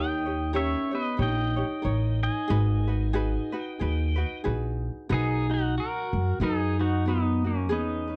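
Swung eighth notes in a relaxed 4/4 carry this short Hawaiian fragment, cut from a longer piece, with a sunny, easygoing mood. The upright bass sits up front, its woody, plucked steel strings the most present voice in the mix, while a light fingerpicked acoustic ukulele fills in the accompaniment further back, the quietest of the parts. Over them, a clean electric pedal steel guitar, played with fingerpicks and slide, sings the melody with compressed volume swells. A vibraphone struck with soft mallets, its motor off, adds a mellow, metallic, ringing second line beneath the steel. The harmony moves from D#7 to G#m7 at 2.5 seconds, then brightens into Bmaj7 as a new section begins at 5.1 seconds. The sound is dry and close, in the manner of a 1970s studio recording.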